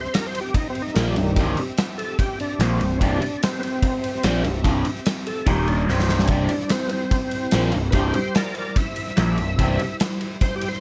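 Confident and driving, this short classic rock cut from a longer piece runs in a straight 4/4. A gritty, thick overdriven tonewheel organ carries the melody as a solo across the whole passage, colored by a slow rotary speaker and chorus vibrato. Behind it, a vintage string machine voicing violas holds soft-attack sawtooth chords with ensemble chorus, sitting in the background. A gated 80s drum kit plays throughout with a punchy kick, medium-tuned snare and bright ride cymbal in a polished stone room, and a short fill lands at 5.9 seconds. From 1.0 to 9.8 seconds, a raw, double-tracked garage guitar picks an overdriven riff through a phaser, joined by a fuzz-laden picked electric bass that hits punchy and up front. The sound is dry and close, with the harmony resting on C and briefly moving to Eb before returning.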